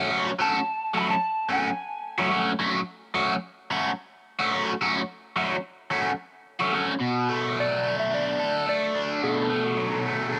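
A bright, overdriven stack guitar, double-tracked, up front and colored by phaser, opens this dark, mysterious rock excerpt in B dorian at 109 BPM with a straight 4/4 riff, while a slightly broken-up electric slide guitar with slapback echo sings a melody until 2.3 seconds and returns at 7.6 seconds, after the harmony moves from F#m to Bm7 at 7.0 seconds, all in a light reverb.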